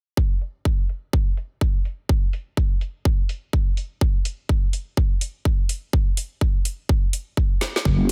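Gritty and swaggering, this bass house excerpt at 125 BPM rides a swung groove of a punchy, tape-warm electronic kick and an up-front garage kit with a woody snare and metallic, low-pass-filtered hats, all kept dry, until a drum fill at 7.6 seconds leads into a dark, nasal vowel-sweep wobble bass on F#1 that arrives at 7.9 seconds with overdrive, chorus and sidechain pumping.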